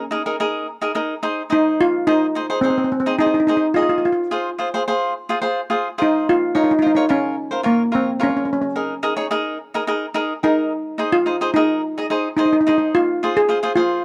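A crisp, picked acoustic cavaquinho opens this sunny, festive calypso on its own, setting an Ab major accompaniment at 108 BPM in a straight 4/4 feel, tuned to A4 = 441 Hz. At 1.5 seconds a double seconds steel pan, struck with hard rubber sticks, enters with the melody, its bright, metallic, shimmering tone sitting just ahead of the cavaquinho in the mix. Both instruments are placed up front and carry on together until the clip ends at 14.0 seconds, as it is cut from a longer piece. The harmony moves through Ebsus4, Ab, Fm and Bbm before returning to Ebsus4, Ab and Fm. The sound is dry and close, in the manner of a 1970s studio, with a small room reverb giving the pair a touch of space.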